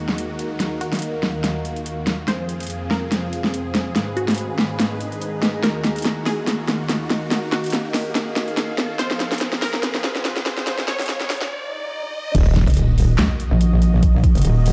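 A bright, gritty sawtooth pluck with phaser and digital delay carries the melody in the background, over huge, lush supersaw chords pumping with sidechain and a deep, moody pad with chorus and built-in reverb. Together they open a half-time heavy wobble dubstep build-up in Eb minor at 143 BPM under a filter sweep, with an up-front drum kit of huge snare, metallic hats, handclaps and crash cymbal, plus background risers and swells. After a short break at 11.5 seconds, the drop hits at 12.3 seconds with an impact, a knocking overdriven kick and a saturated, chorused wobble bass, which gives way at 12.7 seconds to an aggressive, metallic FM wobble bass that drives this menacing, chaotic passage to its cut.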